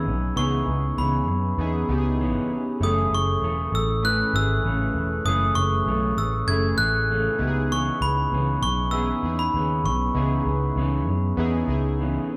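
A straight 4/4 pulse at 98 BPM carries this mellow, wistful indie and bedroom pop fragment in C# minor, moving from C#m7 to F#m7 and back to C#m7 at 7.4 seconds. Up front, a bright, bell-like glockenspiel struck with brass mallets carries the melody over a round, punchy, foam-muted picked electric bass, while a dark, clean, fingered electric guitar with a warbly pitch drift and airy, vintage analog keys with chorus sit further back. The band sounds as if it is playing live together in one room, bathed in a wet, large studio reverb.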